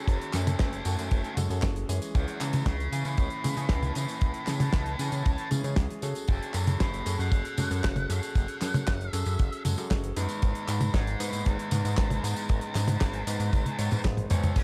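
Italo disco with a nostalgic, melodramatic mood, this short excerpt moves at 116 BPM in a straight 4/4 feel, set in F# dorian and cycling through F#madd9, C#m and G#m. A dark, picked octave-fuzz lead guitar carries the melody throughout, its distorted tone sitting a little back in the mix. Beneath it, a glossy, nasal synth bass blends pulse and sawtooth waves with pulse-width modulation, a plucked filter, a moving notch and chorus, its tube saturation giving it a retro sheen. A clear grand piano adds intimate stabs, with its action noise audible, while a dry, damped 70s drum kit up front brings a fat snare, hi-hat, handclaps, tambourine, toms and crash over a tight kick. Small room ambience surrounds the drums, and a drum fill from 13.5 seconds closes the passage at 14.6 seconds.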